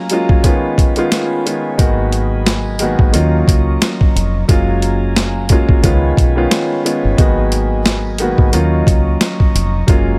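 A swung boom-bap groove at 89 BPM opens the cut, with a compressed, gritty sampler-style kit of thumpy kick, high-tuned snare and hi-hat sitting up front, giving this excerpt a tough, moody hip-hop feel in G# dorian. A woody, intimate upright piano with audible action noise carries the accompaniment alongside soft, flute-like tonewheel organ chords turning through a slow rotary speaker, cycling C#7, G#m7, D#m7 and F#maj9. At 1.8 s a round, punchy fingered electric bass with a foam-muted, deep dub tone enters, and light reverb gives the mix a little space.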